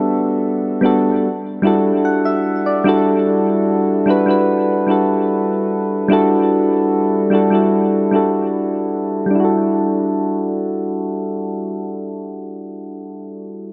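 A slow, straight 4/4 pulse at 74 BPM sets up this longing, moody R&B excerpt in E minor, cut from a longer piece. A solo electric-piano-like synth keys part, soft and round with a mellow sine-like tone, a fast attack and a decaying tail, sits up front with chorus and digital delay. It moves from Gmaj9 to Em11 inside a lush hall reverb and a low-pass filter, with a filter sweep running from 2.9 to 9.3 seconds.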